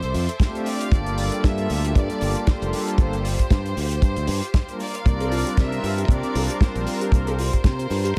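A clear, biting violin section carries a dub-echoed melody over rich background strings, a bright, growly fingered electric bass and a damped 70s kit with a dry, tight kick up front in this sunny, feel-good nu-disco excerpt at 116 BPM in C mixolydian, where a detuned sawtooth analog pad pumps from 0.4 seconds and a soft, round pluck and cowbell join around 5.1 seconds in an echo-heavy small-room mix.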